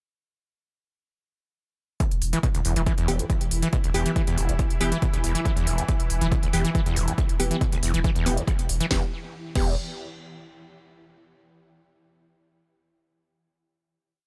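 A squelchy, gritty acid bass drives this intense, industrial peak-time techno piece, its distorted sawtooth line full of accents and slides running a 12-step loop that drifts against the bar, colored by lush chorus, cassette-tape grit, delay and sidechain pumping. The electronic kick arrives at 2.0 s with a punchy four-on-the-floor pulse, together with a techno drum kit of cracking snare on the backbeat, smooth programmed hi-hats and crash cymbal, both re-recorded in a small room. Beneath them, a deep, saturated sine sub bass holds a low rumble between the kicks, overdriven, low-pass filtered and pumping with the sidechain. A swarming drone of detuned, wave-folded tones slowly evolves in its own reverb with a tense, granular shimmer, while from 3.1 s crisp, digital wavetable chord stabs with a moving notch fire sparse echoing hits, one shape moved in parallel. The groove holds steady in a digital ambience until a final chord rings out from 8.9 s.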